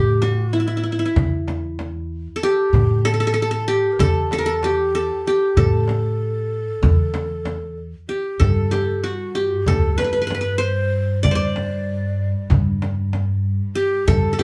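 Stately and warm, this Turkish makam ensemble piece moves in 9/8 at 190 BPM counted in eighths, with a straight feel, and is cut from a longer piece. Up front, the qanun carries the melody with a plucked, bright-edged sound from its triple strings, while a breathy, hollow ney, end-blown with vibrato and a crisp attack, traces a second line in the background. A woody, thumpy upright bass played pizzicato on gut strings sits prominently beneath them. From 0.2 s, a small, high clay-shell darbuka played with soft hands enters together with a close and dry frame drum. At 8.4 s the music settles into G makam rast, and a bowed cello section enters in the background, holding a pure, floating drone on G2 with a soft sul tasto attack. The ensemble plays live together in one room, surrounded by a wet studio ambience.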